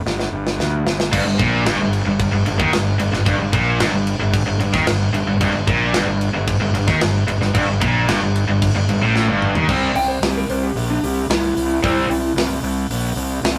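A rough rehearsal-room recording with moderate small-room reverb captures this aggressive, driving hard rock passage at 112 BPM in G minor, where a tight metal drum kit with a medium-tuned snare opens on a fill beside a dark, round fuzz bass, a scooped, compressed distorted guitar and a bright high-gain guitar take up the riff at 1.1 seconds, and a slightly broken-up lead guitar plays a brief solo melody from 10.0 seconds.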